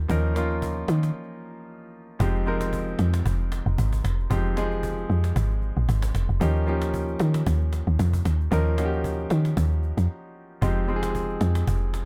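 A dark, punchy log drum bass with a woody, fast-attack, decaying tone sits up front in this soulful, hypnotic amapiano passage in F minor at 114 BPM with a 16th-note swing. A warm baby grand piano plays Eb9 and Fm9 chords beneath it, and a snappy acoustic cajon with snares adds a live-room feel, all in a dry mix that pauses briefly at 1.1 and 10.1 seconds in this section cut from a longer piece.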